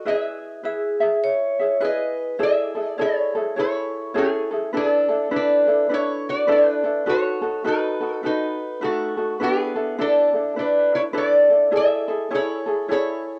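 A lap resonator guitar carries the melody from the first moment, its metallic, nasal slide tone plucked with fingerpicks and sitting up front, while a thumb-plucked ukulele picks out a light, acoustic accompaniment beneath it. This is a sunny, dreamy Hawaiian passage in 4/4 with a relaxed swing on the eighth notes, cut from a longer piece. A bright vibraphone struck with hard mallets, motor off, adds a brief ringing second line from 0.7 to 2.4 seconds before dropping out. From 2.4 seconds the music opens into a new section, moving through Amaj7, E7sus4 and B7/D# before returning to Amaj7. Every instrument carries the soft grain of cassette tape, and the whole recording has the homespun feel of a small room with light reverb.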